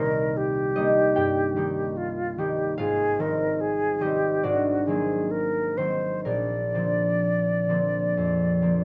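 Dreamy and pastoral, this short excerpt cut from a longer piece is an impressionist classical duo for flute and harp, moving at a rubato 62-76 BPM in 4/4 with tuning set to A4 = 439 Hz. The concert flute carries the melody between F4 and D5, its tone pure and expressive, with vibrato and a soft attack that keep it gently shaded at the front of the sound. The concert harp supplies the accompaniment from a deep Ab1 up to Bb5, acoustic, fingerpicked and ringing, also placed up front. Both instruments play together from the start to the end at 8.8 seconds, shaping a single section over the chords Cm7, Abmaj7, Ab9 and Bbadd9. Light reverb gives the duo a soft sense of space.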